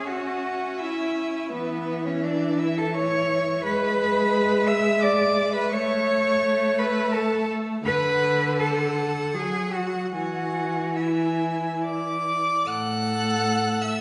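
An up-front, smooth cello with vibrato carries the bass beneath a focused, close viola accompaniment, a rich second violin line and a distant first violin singing the melody with light vibrato, in this warm, lyrical slow romantic string quartet movement in 3/4 at a rubato 67-88 BPM, cut from a longer piece and heard from further back in a wet recital hall.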